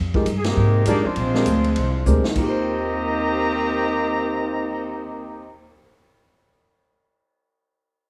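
A swinging 200 BPM 4/4 groove drives this brassy, energetic big band jazz clip in Eb major, with a woody, thumpy pizzicato upright bass up front, a polished grand piano comping over Fm11, Bb13 and Eb6, a vintage kit with dark cymbals and a punchy kick that plays a fill at 2.1 seconds and stops at 4.7 seconds, a mellow trumpet section with vibrato carrying the melody from a band accent at 0.4 seconds, and a bright, soft-edged trombone section on the second line, all in a light studio reverb.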